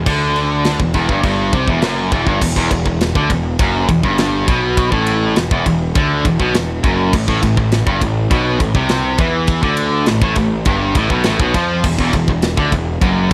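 A double-tracked, high-gain guitar riff in E minor opens this dark, relentless heavy metal excerpt at 102 BPM, joined from the start by a growly, fuzz-laden picked bass and a tight studio drum kit with an equally tight kick, medium-tuned snare, crash and ride cymbals, and a rolled-off top. The bright, up-front guitar and the overdriven bass drive a straight 4/4 groove under light reverb, tuned slightly flat to A4 = 436 Hz. The harmony moves from Em to A5 at 7.1 seconds before the chords drop out at 11.8 seconds.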